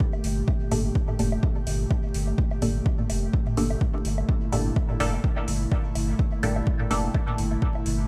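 Nocturnal and cavernous, this dub techno excerpt rests on a single Gmadd9 chord with a lightly swung 16th-note feel. A punchy, overdriven electronic kick drum sits up front in a small room reverb, joined by metallic, overdriven hi-hats and analog woodblock and toms tucked into the background, the latter carrying dub echo and sidechain pumping. Beneath them a round sine sub bass hovers between F1 and G1, thickened by tube saturation and sidechain pumping. An airy, breathy pad holds sustained chords through chorus with a slow attack and long release. A muted, detuned sawtooth chord stab with a filter pluck enters at 0.7 s, colored by phaser, cassette tape and dub echo. The echo-heavy mix carries light reverb and a layer of vinyl crackle.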